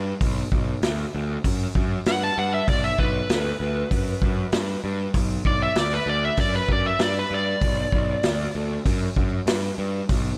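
A close, lightly reverberant studio sound frames this smoky, brooding blues rock power trio piece with a southern rock edge, where a bright, growly fuzz bass and a punchy vintage kit with a rolled-off top and pumping small-room air sit on a single B minor chord as an overdriven slide guitar, played with fingerpicks, enters at 2.1 s with a warm solo and stops at 8.5 s.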